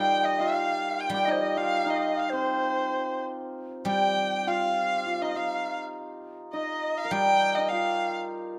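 Closely miked with light reverb, this wistful, graceful fragment of Chinese traditional chamber music moves at 100 BPM in a rubato 2/4: a clear, up-front erhu carries the bowed melody with vibrato and portamento, a large bamboo dizi with a buzzing membrane and rolled-off highs sits in the background as a second line, a bright, shimmering hammered dulcimer rings forward as another second line, and a guzheng played with fingerpicks adds silvery accompaniment on G3, with the music moving into a new section at 3.6 seconds.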